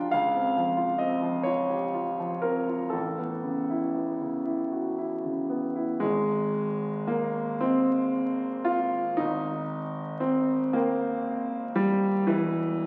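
A clear concert grand piano opens this short classical excerpt alone, its deep bass and long sustain ringing up front through the crackle of a very old 78 rpm record, in a serene, luminous impressionist mood. In a slow, rubato 6/8 in Ab major, the harmony drifts from a shimmering Dbmaj7#11 to Aadd9, then settles on Ab at 6.0 seconds and moves to Cm7/Ab before the chords fall away at 12.3 seconds. The natural tone of the instrument blooms in a wet recital hall reverb, spanning from the low E1 up to Bb5.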